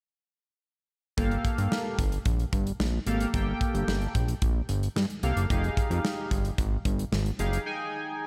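Danceable and late-night, this early-eighties boogie funk excerpt at 111 BPM in G phrygian pairs an up-front acoustic drum kit with a tight kick and medium-tuned snare, a fat, saturated analog bass built from detuned sawtooth with a filter pluck, and a glossy, chorused polysynth with pulse-width modulation and a filter sweep, all entering at 1.2 s over Gm9 moving to Fm9, before the bass drops out at 7.6 s and the drums at 7.7 s for a brief break carried by the synth in light studio reverb.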